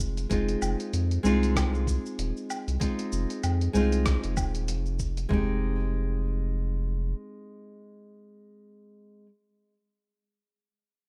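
This wistful sunset chillout excerpt in F minor at 96 BPM opens with fingerpicked nylon-string guitar up front with digital delay, a deep, round sine sub bass, and a gritty, compressed soul sampler-style drum kit with thumpy kick, toms, hi-hat, rim click, shaker and woodblock, tape-tinged and re-recorded in a large room, all on a swung 16th feel. The harmony moves from Ab6 to Fm7 at 5.3 seconds, and the drums fall away just after that change. The sub bass stops at 7.1 seconds, leaving the classical-toned guitar alone until 9.3 seconds, all within the rough feel of a home demo dressed in digital ambience.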